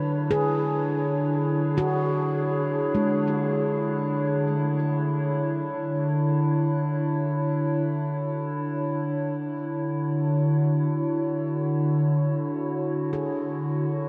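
This serene ambient passage, cut from a longer piece, opens in free time with a warbly, tape-like pad holding sustained chords up front, its lo-fi, nostalgic, dark tone shaped by a filter sweep through the first 5.5 seconds. Beneath it an analog drone hums at the edge of hearing, a vintage, resonant layer that drops out of the mix at 5.5 seconds. Over both, a handpan plays ringing, meditative arpeggios, close-miked and dry in its own tone, though delay and shimmer reverb trail each note. At 5.5 seconds the harmony settles from C#m/D onto Dmaj7, and the handpan drops away shortly after before returning near the close for its last few notes. A huge, moderate ambient reverb wraps the whole piece in a long, glowing space that gives it a calm, warm feel.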